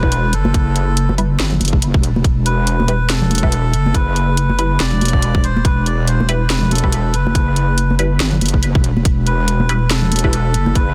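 Dark and heavy, this deep dubstep excerpt rolls at 141 BPM in a swung half-time feel in E minor, with a reedy, breathy melodica tune in dub echo floating over a chorused, square-wave wobble bass and a tight, tape-warm electronic kick up front. An overdriven garage kit adds cracking snare and hi-hat, while soft-handed congas and muted, wave-folded chord stabs, the latter run through phaser, cassette tape and dub echo, sit in the background of a dense, heavily limited mix dusted with vinyl crackle.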